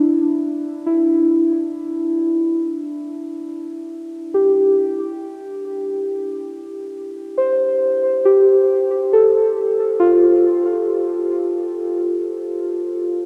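A straight 4/4 pulse at 69 BPM sets an unhurried pace for this serene, spacious ambient excerpt in D minor, built on a single Dm11 chord that arrives at 0.4 s. Muted, felt-like synth keys play alone from start to finish between D4 and C5, their dark, warbling tone coloured by chorus and tape echo. A wet, lush hall reverb with a 2.9-second tail surrounds the up-front keys in a spacious setting.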